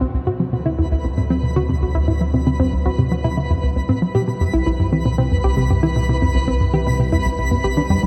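Luminous and cosmic, this short cut of ambient, sequencer-driven space music at 116 BPM moves from D7 to Cmaj7 as a tight, punchy sequencer bass riff with delay drives alongside a round sine sub bass, a detuned unison pluck plays up-front arpeggios through delay and a moving notch filter, a thick, warbling chorused pad fades in from the background, and a twinkling granular texture with octave-up shimmer joins at 0.6 s, all set in a huge, dark ambient reverb.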